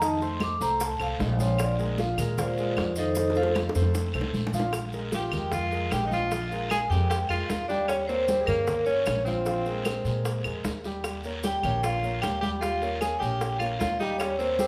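A ringing, metallic vibraphone struck with medium hard mallets leads this sunny, danceable Afro-Cuban jazz excerpt, its slow motor vibrato shimmering as it carries the melody from the very start. The band moves at a brisk 152 BPM in a straight 4/4, with an up-front pizzicato upright bass giving a woody low end and a concert grand piano filling in the harmony with a deep bass register. Percussion sits in the background: bright, high-tuned congas, tight bongos played with hard hands, and woody claves, while a raspy, saturated guiro and grainy maracas add texture. A fill arrives at 3.2 s. At 5.1 s, a breathy tenor saxophone enters with a present, jazz-style second line over shifting dominant and suspended chords. The whole group sounds like it is playing together live in one large room, with a moderate studio reverb around it.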